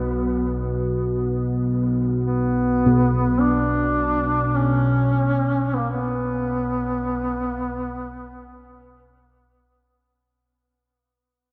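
In free time and B minor, this unsettling dark ambient drone excerpt sets a warm, distant duduk melody with vibrato and scooped notes up front over a detuned, warbling analog sawtooth drone with chorus, while bronze-toned bossed gongs with analog delay enter in the background at 2.9 seconds, all soaked in a lush hall reverb as the piece fades out from 4.2 seconds.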